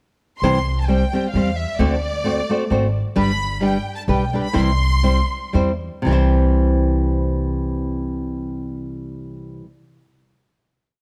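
Lush bowed violins with vibrato sing an expressive, motif-based melody over fingerpicked and chop-strummed flamenco guitar, its finger squeaks audible, and woody, thumpy pizzicato upright bass marking root and fifth on the main beats, all entering together in a short, festive and romantic mariachi piece in three that slows from 3.2 seconds, the violins dropping out at 5.5 seconds as guitar and bass ring out a final chord in a close, detailed studio sound with light reverb.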